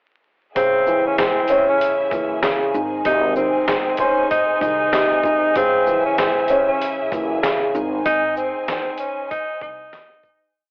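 Boom-bap hip-hop with a moody, tough edge, built from a short looping jazz line on a mellow tenor saxophone played up front with subtone and vibrato, a dark upright piano arpeggio in eighths repeated like a sampled loop, a lush bowed string pad, a deep woody pizzicato upright bass line, and a gritty, pitched-down sampler-style kit of thumpy kick, clap-layered snare, quarter-note hats and shaker. The whole mix carries a lo-fi cassette character with vinyl crackle and a telephone-like tint, and it moves into a break and fade-out from 8.1 seconds.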